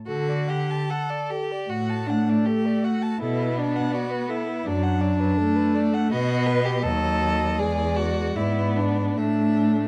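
A dark, gently reverberant studio sound frames this lyrical fragment of a slow romantic string quartet movement in D major at 70-85 BPM in a flexible, rubato 4/4, where a close, smooth violin with vibrato sings the melody over a focused, up-front second violin, a rich cello bass, and a distant, even viola that joins at 1.7 s as the harmony moves from D through Bm7, B7 and E7 to A5.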